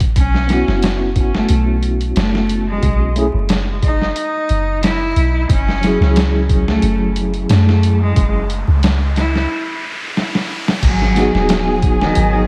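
Trip hop with a hypnotic, dark mood, built on a gritty, pitched-down boom bap sampler kit with thumpy kick and crash, a deep, round 808-style bass, a distant, bowed cello melody with tape echo, and a tine electric piano with tremolo, as an electronic riser from 7.1 seconds leads through a drum fill into lush, vibrato-rich symphonic strings at 10.8 seconds, all under vinyl crackle and light reverb in this excerpt cut from a longer piece.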